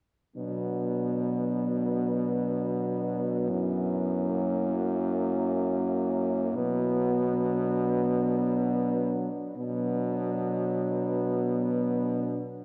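A punchy, vintage-toned French horn carries the bass up front, its clear sound touched with light vibrato as it moves between F#2 and B2. This elegiac, yearning classical passage for horn quartet unfolds in free time in B minor, tuned to A4 = 437 Hz, and is cut from a longer piece. The four horns sound together from 0.4 to 12.4 seconds. Above the bass, a dark, smooth-topped horn sings the melody between D4 and E4 from the background, while a close-miked second line with light vibrato sits between A#3 and B3. A distant, roomy horn holds a warm accompaniment on F#3. The harmony moves from B minor to F#7 at 3.5 seconds and back to B minor at 6.5 seconds, all bathed in a wet church reverb with a 3.1-second decay and a dark production.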